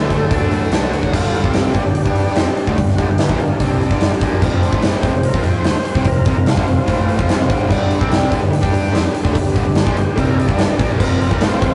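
A straight 4/4 drive at 146 BPM powers this swaggering classic rock excerpt in G mixolydian, with a huge arena drum kit up front, its bright cymbals, punchy kick and medium-tuned snare entering at 0.1 seconds while a growling picked bass and two overdriven riff guitars, one biting and dark, the other bright and distorted, dig in beneath. A gritty tonewheel organ carries the melody through a slow rotary speaker with key click, framed by a shimmering, octave-doubled twelve-string acoustic with a woody, boxy tone and a lush, phased string machine holding sustained chords over a G to F5 movement. A close, dry cowbell joins at 7.7 seconds, and the whole thing has the rough, dull-topped sound of a rehearsal-room recording in a moderate reverb.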